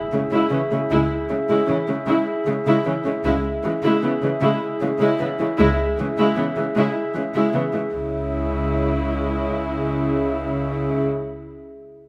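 Lightly reverberant, this tense, ominous cinematic fragment in three opens with a very quiet electronic impact beneath the glassy, ethereal sustained chords of a glass harmonica. A dark, intimate chamber viola section plays sul tasto accompaniment up front with light vibrato, and a rich, floating symphonic cello section holds the bass. A woody, lush double bass section enters at 0.9 seconds, while the harmony shifts at 3.2 seconds and returns to its opening chord at 7.9 seconds.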